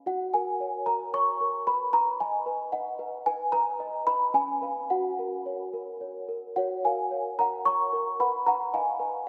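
A small, bell-like celesta plays solo and up front, sweet and delicate with a mellow touch through an analog chorus and diffuse ambient delay, singing an innocent, tender classical lullaby in F# major at 111 BPM in 3/4 across a range from C#4 to C#6, moving through F#, B and C#7 chords with its opening phrase returning at 6.6 seconds, the dreamy mix soaked in a lingering wet plate reverb in this brief excerpt from a longer piece.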